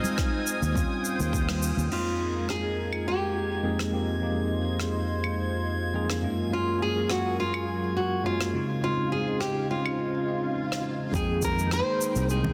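A bell-like tine electric piano, filtered and echoing, opens this wistful, relaxed sunset chillout excerpt alongside a lush, detuned unison pad with chorus, a soft brush kit of claves, rim click, shaker and crash, congas in the background, and a glassy, drifting high texture. At 104 BPM in 4/4 with a light swing on the sixteenths, the piece sits in F minor, moving from Dbmaj9 and Eb13 into Fm11, Gbmaj9 and back to Dbmaj9. A deep, tape-warm electronic kick and a growly, up-front fretless bass join briefly around a band accent at 1.5 seconds. At 1.9 seconds a fingerpicked nylon-string guitar takes the melody, its fresh strings and finger squeaks carried by delay. An electronic swell arrives at 10.2 seconds, after which the kick and bass return as the harmony settles on Fm11. A moderate plate reverb and a dense, heavily limited modern master round out the sound.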